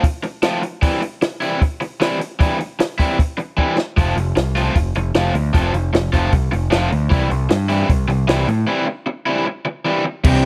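Jangly and wistful, this short indie rock excerpt moves at a brisk 153 BPM in a straight 4/4, sitting in C major and cycling between F and C chords. A raw garage guitar drives the riff from the start, its bright, overdriven, picked tone placed up front, while a compact cocktail drum kit plays alongside, also up front, with a dry, natural sound, dark cymbals, a high-tuned snare and a punchy kick. After a drum fill at 3.6 seconds, a growling picked electric bass enters at 4.0 seconds, overdriven and direct, adding a gritty low end. A break arrives at 8.7 seconds, and a twangy electric guitar with a clean tone and ensemble chorus appears only briefly at the very end. The close, dry recording carries a small room reverb and a 1970s studio character.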